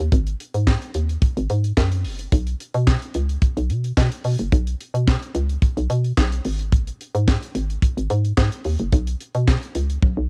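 A hollow, knocking FM bass with a bouncy, fast-attack punch opens this feel-good, danceable early-eighties boogie funk excerpt at 109 BPM, joined at 0.1 seconds by a tight, dry acoustic drum kit with a high-tuned snare, handclaps, hi-hat and toms, both sitting up front in a close, home-recorded cassette sound before a drum fill arrives at 10.0 seconds.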